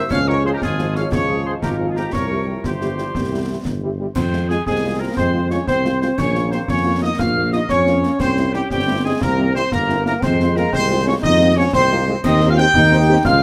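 A stern, martial military-style march for wind band in a straight 6/8, this excerpt cut from a longer piece sets a distant trumpet section on the melody over a clear euphonium, a smooth-topped woodwind section and a pure, wooden piccolo on second lines, with a dark trombone section holding sustained chords in the background, a mellow French horn section accompanying, an up-front tuba with soft attack on bass, and close, dry concert snare, clash cymbals with dark tone and concert bass drum, all under light reverb as the music moves from its opening passage into a new section at 4.2 seconds.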